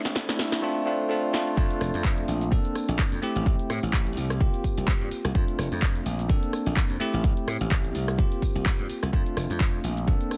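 This funky, joyful filtered disco house excerpt opens on a short build-up, with a filter sweep and a drum fill over a bell-like tine electric piano and a bright slap bass moving from Am to Csus4. At 1.6 seconds the drop arrives, and the groove settles at 127 BPM in 4/4 with a light swing on the 16ths in F major, cycling through F6, Bbmaj9, Am7 and C7sus4. The clean electric piano sits up front with a phaser and sidechain pumping, while the direct slap bass is high-passed and pumps as well. An analog drum machine supplies a punchy snare, handclaps, hi-hat, rim click and shaker, tape-warm in tone with a short room on the snare, clap and hats, and pumping on the hats and percussion. Alongside them a layered, produced electronic kick leads the mix, all set in light reverb and digital ambience with a gently rolled-off top end.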